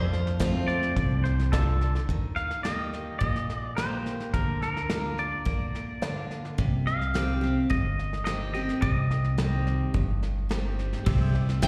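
Honky-tonk and classic country at 107 BPM in a straight 4/4, this down-home, nostalgic passage, cut from a longer piece, sets a bright, full-bodied picked acoustic guitar up front on accompaniment with slapback echo, with a second acoustic adding brief melody, a woody, thumpy pizzicato upright bass, and a soft brush kit with dark cymbals and a punchy kick. A pedal steel with subtle chorus and an intimate, slightly detuned upright piano sit in the background near the opening. A twangy, compressed electric guitar with slapback and tape echo plays a second line from 0.7 s, and a clean electric guitar solo runs from 2.1 s. The chords move from F through Eb, Bb/D and Cm to C, and the whole performance is heard as a live gig through the venue's PA with recital hall reverb.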